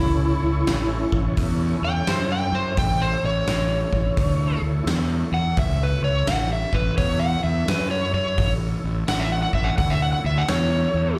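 Heard live through a club PA with light reverb, this gritty, driving swung blues rock and southern rock cut features an up-front overdriven slide guitar soloing with slapback echo, a growly fuzz bass, a thick tonewheel organ holding sustained chords in the background through a slow rotary speaker with chorus vibrato and key click, and a big-room arena drum kit with a punchy kick and medium-tuned snare entering at 0.7 seconds.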